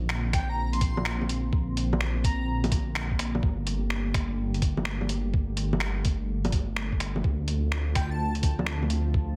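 Rainy and wistful, this future garage excerpt at 126 BPM in G minor sets a warbling, nostalgic tape-like pad with chorus and sidechain pumping over Bbadd9, Gmadd9 and Dm7 chords, a deep, rumbling detuned saw bass that also pumps, a muffled, thumpy electronic kick, and an up-front lo-fi sampler kit of bongos, finger snaps and hi-hat swung at 66% on 16ths, while an airy, dreamy lead with chorus and dub echo floats in from 0.3 to 2.5 seconds and returns briefly at 8.0 seconds.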